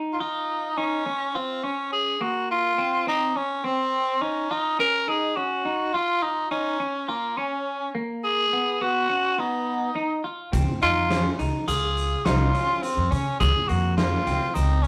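A straight 5/4 pulse at 104 BPM drives this bright, driving progressive instrumental, cut from a longer piece. A clean, compressed electric guitar plays picked arpeggios through a phaser from the start, while a growling tenor saxophone takes the solo melody almost at once, raspy and up front with jazz-style vibrato. The harmony moves from Dbmaj7 through Gb5/Db and Bmaj9 before returning to Dbmaj7 at 10.5 seconds, where the rest of the band arrives. A woody pizzicato upright bass sits up front, and an oversized, low-tuned drum kit adds a punchy kick, fat snare and hi-hat with a dark, saturated, rolled-off character in a stone-room sound. A very quiet, grainy tube shaker sits close and dry beneath them, all within a rough rehearsal-room recording with tube saturation and a wet studio reverb.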